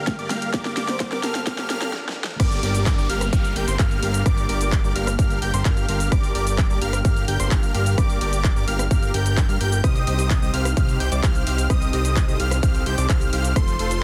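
Festival progressive house, emotional and powerful, cut from a longer piece: a punchy layered kick up front, an overdriven big-room kit with a huge snare, handclaps, hi-hat, shaker, rim click and crash, a fat saturated analog bass, a dense compressed supersaw riff, the wave-folded arpeggios of a unison lead trailed by dub echo, and an airy phased pad run from the start. Over a build-up of drum fills, a very quiet riser and downlifter, a bright clean electric guitar in the background and a soft, breathy flute-like synth lead halt at 1.9 s. At 2.4 s the drop arrives, with the bass, supersaw, lead and pad pumping to the sidechain in a heavily limited, dry master.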